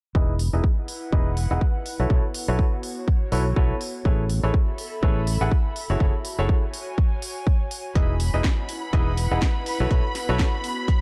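A clear baby grand piano riff under a filter sweep and dub echo opens this uplifting, euphoric piano house excerpt at 123 BPM in E major, joined from 0.1 s by a growly, bright fingered electric bass and a punchy, up-front electronic kick, with a breathy, detuned chorused pad and a house kit of crisp hats and cracking snare filling out the sidechain-pumped groove through Emaj7, B9sus4, Amaj9 and F#m9, before a distant, vibrato-rich violin section and a gritty, very quiet breakbeat sampler kit arrive at 8.0 s in a dark, dry mix.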